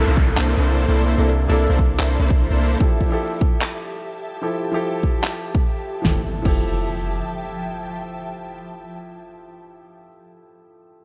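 Future bass in F major at 148 BPM with a half-time feel, this lush, playful excerpt opens on a C13 chord with a huge, detuned supersaw riff and a deep, boomy 808-style bass carrying tube saturation. Both pump against a punchy electronic kick and a layered pop kit with a fat snare, crash cymbal and handclaps, while a clear grand piano with delay accompanies throughout and a downlifter and impact sit in the background. From 0.3 s an ethereal, airy pad with chorus and tremolo sustains the chords. The supersaw stops at 2.8 s as the harmony moves to Fmaj9, and the drums stop at 6.6 s, with the bass returning briefly from 6.0 s.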